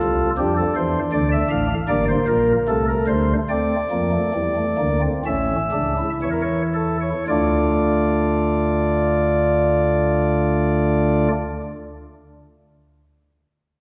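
A solo pipe organ on soft flute stops opens this baroque-style three-part fugue in D minor, its warm, chiffy, up-front voices spanning from a low G1 up to F5. The mood is driving yet contemplative, in a straight 4/4 at 54 to 83 BPM, slowing through the first 7.3 seconds as the harmony moves from D minor through Bbmaj13/G and an A chord before settling back on D minor. A wet concert-hall reverb places the listener further back in the room, and this short passage, cut from a longer piece, ends at 11.3 seconds.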